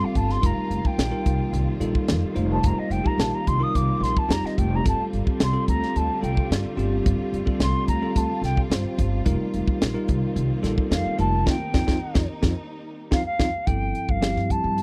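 Intense and funky, this electric jazz fusion excerpt moves at 109 BPM in a straight 4/4 as a mellow, hollow silver concert flute with vibrato carries a solo over a bell-like tine electric piano, a woody, growly pizzicato upright bass, a rich bowed string section holding sustained chords until 13.7 seconds, and a crisp, up-front drum kit with a high-tuned snare and tight kick entering at 0.2 seconds, the band hitting an accent from 11.5 seconds under a drum fill at 12.6 seconds as the harmony moves through F9sus4 and G9sus4 to G13sus4, all captured in a dry, close 1970s-style studio sound.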